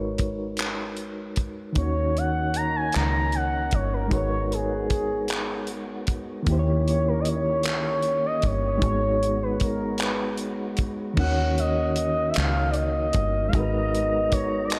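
A smooth, gliding portamento lead with chorus and delay carries a sultry, yearning melody from 1.8 s over a slow six-eight R&B groove in Eb minor at 51 BPM, backed by a reedy, lightly overdriven electric piano with fast tremolo, a round, foam-muted dub bass, a dry, damped 70s drum kit with handclaps and a tight kick, and a clean tonewheel organ with key click and slow rotary speaker sitting in the background, all set in a dreamy church reverb in this cut from a longer piece.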